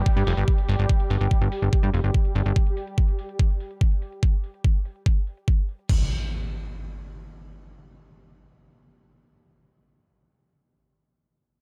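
A dry, close-sounding mix opens this driving, psychedelic trance fragment, cut from a longer piece and running at 144 BPM in a straight 4/4 over a G5 chord. An overdriven, knocking electronic kick sits up front alongside a punchy, funky analog bass whose sawtooth and pulse-wave tones snap with a fast filter pluck and decay. Behind them, a faint techno drum kit with crash cymbal and hi-hat, re-recorded in a large room and darkened by low-pass filtering, adds a distant layer. A bubbling, detuned texture of sustained chords steps through random resonant filter changes, colored by chorus, its own reverb and sidechain pumping, though it and the bass fall away by about 2.6 seconds. At 5.9 seconds the harmony drops out and an up-front electronic impact enters just as the drums finish at 6.0 seconds, ringing until 9.7 seconds.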